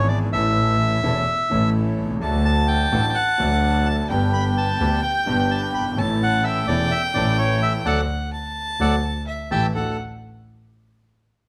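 In a rubato 4/4 tango feel, this nostalgic, elegant passage, cut from a longer piece, moves through A, D and G chords before a change of section at 9.8 seconds. A reedy, bright bandoneon carries the melody up front, while a second, darker bandoneon sits dry and close-miked in the background with full, reedy stabs. A bowed double bass is the loudest part: rich and biting, with vibrato and an airy bow, it sounds intense and close. A concert grand piano supplies smooth, vintage accompaniment with a deep bass and long sustain. A bowed violin enters at 2.2 seconds with an earthy second line, biting yet smooth on top with light vibrato, and the band plays an accent from 7.9 seconds. The players share one live stone room whose moderate reverb gives the ensemble a natural sense of space.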